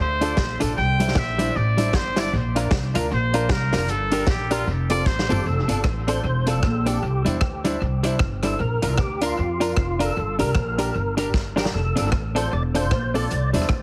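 A clear trumpet with light vibrato opens this joyful, bouncy ska excerpt at 153 BPM in F major, taking a solo for the first 5.5 seconds over a swung 4/4 groove, its phrases trailing into dub echo. Beneath it a woody, thumpy pizzicato upright bass sits up front, while a punchy vintage drum kit with a rolled-off top works hi-hat, kick, rim click, snare and toms, adding fills at 5.1 and 11.3 seconds. Further back, a clean, compressed electric guitar with a warbly pitch drift plays accompaniment, a warm upright piano adds stabs, and a jingly tambourine sparkles faintly, all tinged with dub echo. At 5.3 seconds a fat, lightly overdriven tonewheel organ with key click, chorus vibrato and a slow rotary speaker takes over the melody as the chords cycle through F6, Cadd9, Bb and Gm. The whole mix sits in a small room with light reverb and a heavily compressed, radio-like sound.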